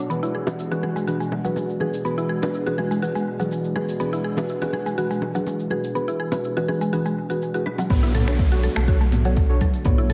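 A woody, round mallet-like synth pluck carries the arpeggios in this hypnotic, earthy afro house fragment at 123 BPM, its chorus and delay pumping against the beat as a filter sweep works over it through the opening 7.9 seconds. Beneath it, a smooth, detuned analog pad holds sustained chords, while a deep, warbling chord stab with a vintage, dark tone adds decaying stabs over an E9 harmony. An afro-pop drum kit of finger snaps, crisp hats, shaker and toms sits low and tape-warm with filtered highs, joined by tight, high-tuned bongos in the background. At 7.9 seconds the drop arrives on Bm7, bringing a layered electronic kick, a round sine sub bass on B1, ringing, saturated congas and a downlifter as the bongos fall away. A plate reverb soaks the whole mix in a dreamy haze.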